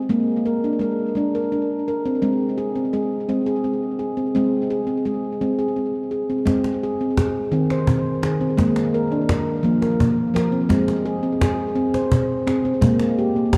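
A ringing nitrided-steel handpan, struck with sharp finger strokes and carried by delay, plays up-front arpeggios in Ab lydian at a slow 57 BPM in 6/8, joined at 6.5 s by a woody cajon with faint snares and hard hands, both bathed in a dark cathedral reverb that gives this short world-meditative passage a gentle, dreamy calm.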